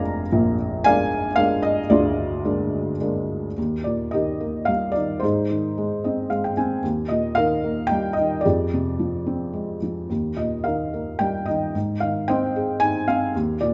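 Classical solo piano in a lyrical, hopeful and relaxed mood, this rubato waltz-time excerpt features a felt-muted upright piano, soft, mellow and intimate with audible action noise and short sustain, sitting up front in light reverb, moving from a brief opening into a longer second section where a fill appears around 5.8 seconds over a harmony of Eb, Ab and added-ninth chords.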